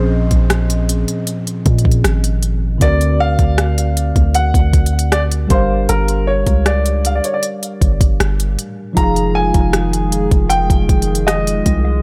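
Contemporary R&B in F minor at 78 BPM, this moody, sensual clip opens with a faint electronic downlifter beneath a natural-toned baby grand piano melody with short sustain and tape echo. A clean tine electric piano with analog chorus and a deep, boomy 808-style bass up front fill out the harmony, while a soft electronic drum kit of kick, smooth hi-hat and rim click enters at 0.3 s. A hollow, flute-like pad with chorus joins at 9.0 s as the chords move from Bbm11 through D7alt and Gm7 to Fm9, set in a digital ambience.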